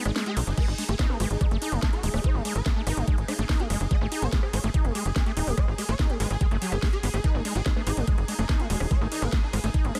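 Dense and heavily limited in a digital ambience, this alien psychedelic trance excerpt at 144 BPM in G# phrygian opens with a very quiet electronic swell as a tight, nasal sequencer bass drives beneath a knocking, up-front electronic kick that enters at 0.6 s, while a garage drum kit adds cracking snare and metallic hats, a squelchy, distorted acid bass riff with dub echo churns through the midrange, a swarming, detuned rave lead with phaser and portamento carries the melody in the background over bubbling stepped-filter chords, and a dark vowel-sweep wobble bass surfaces faintly at 1.1 s and again at 7.8 s.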